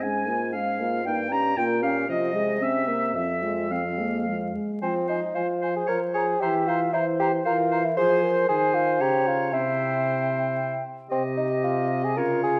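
A hollow silver flute carries the melody with vibrato over a clear, distant oboe second line, a mellow clarinet, a vintage-toned French horn and a bassoon bass with light vibrato in this stormy, urgent fragment of a quick, rubato classical-period wind quintet movement in triple time, which turns to a new section at 4.8 seconds, set in a moderate scoring-stage reverb under a layer of vinyl crackle.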